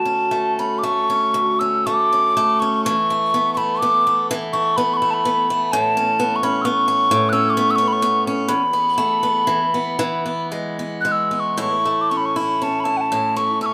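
Set in a loose, rubato 3/4 that drifts between 56 and 67 BPM, this Celtic slow air in A major unfolds with a nostalgic, pastoral calm. A metal tin whistle carries the melody across a range of F#5 to F#6, its hollow, airy tone marked by a soft chiff on tongued notes and a gentle vibrato. Beneath it, a picked acoustic guitar with a swing feel sits up front in the mix, bright and slightly boxy, with the occasional finger squeak audible through the close, detailed microphones. The harmony moves from D5 through Esus4 and Aadd9, returns to Esus4, shifts to E at 9.5 seconds, and settles on A as a new section opens at 11.6 seconds. Light reverb gives the pair a little space, and the passage is cut from a longer piece, ending at 13.7 seconds.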